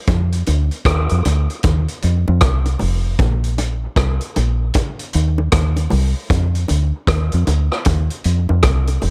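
Hazy and spacious, this dub reggae excerpt settles into a swung 4/4 groove carried by a dark, round fingered electric bass, foam-muted and up front as it sits between F1 and F2. A vintage acoustic drum kit with a punchy kick, rim clicks and hi-hat sounds mid-forward with a rolled-off top, while low-tuned bongos, close and dry in the background, are high-pass filtered and sent through a dub echo. All three parts play together from 0.1 to 9.1 seconds under a light reverb.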